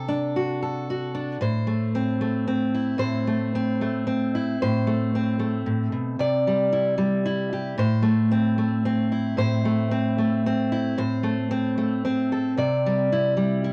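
A fingerpicked steel-string dreadnought guitar carries this short folk piece alone, sitting up front with a dark, full-bodied tone and audible finger squeak. The mood is warm and pastoral, moving in an easy 3/4 at 113 BPM with a straight feel. The harmony opens on D/C before settling into A minor at 1.4 seconds, then moves through Amadd9 and Cadd9 and back to A minor, finishing on Cadd9. The guitar ranges from A2 up to D5. The home recording has a cassette-tape character and a wet booth ambience with a short decay, and the clip is cut from a longer piece.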